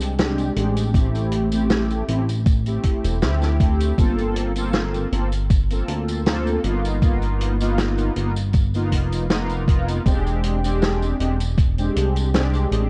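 An overdriven electronic kick drum stands out at the front of this hazy, nostalgic vaporwave passage, a thumpy, sampler-style hit with 12-bit grit that sounds re-recorded in a small room, entering at 0.9 seconds and dropping out at 11.7 seconds. Underneath, a chorused synth bass sits up front with a glossy, retro tone built from pulse and sawtooth waves, its filter pluck giving each note a fast attack before it sustains low in the register. A mellow synth brass part carries the accompaniment, round and brassy with vibrato, ring modulation and a filter sweep, dressed in analog chorus and delay. A vintage drum kit of hi-hat, medium-tuned snare and tambourine fills in the groove with a rolled-off top and its own sampler grit. The tune moves at 79 BPM in 4/4 with a light 16th-note swing in G dorian, tuned slightly flat of standard pitch, drifting through rich chords such as Am7, Gm11 and altered dominants. 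Light studio reverb and a dark, warm production give this short cut from a longer piece a dusty, dreamlike glow.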